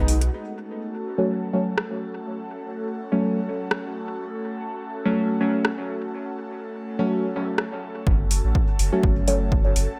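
Nocturnal and hazy, this dub techno excerpt moves at 124 BPM in F# minor with a gentle 16th-note swing, resting on a single F# minor chord. A deep, mellow chord stab sits up front, its soft, evolving tone thickened by chorus and phaser, pulsed by sidechain pumping and trailed by dub echo, while a filter sweep runs across it from 0.3 to 8.1 seconds. Beneath it, an airy, breathy pad holds sustained chords with a detuned, noisy shimmer, a slow attack and long release, also swept by a filter over the same span and colored by chorus and phaser. A deep house kit of metallic hats and rim clicks plays throughout, overdriven and up front, with its hats and snare darkened by low-pass filtering and touched by dub echo. At 8.1 seconds the music shifts: a round, soft sub bass returns under the pumping, joined by a punchy analog kick that drives the final stretch, all within a light reverb.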